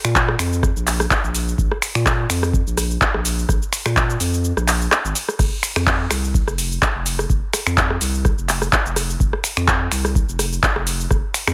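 A light reverb gives this gritty, raw acid house excerpt a modest sense of space while keeping it close and rough. At 126 BPM in 4/4 with a gentle 16th-note swing, an up-front analog drum machine with metallic hats lays out crash cymbal, finger snaps, handclaps, hi-hat, rim click and shaker, carrying a tape-warm tone. A deep analog kick drum enters at 0.2 seconds and drops out between 4.4 and 5.4 seconds, leaving the drum machine and bass to carry the groove briefly. Underneath, a thick, saturated sine sub bass with a fast attack and sustained notes sits between F1 and Bb2, pumping against the beat through sidechain compression. The result is a raw fragment of a longer track built purely from drums and bass.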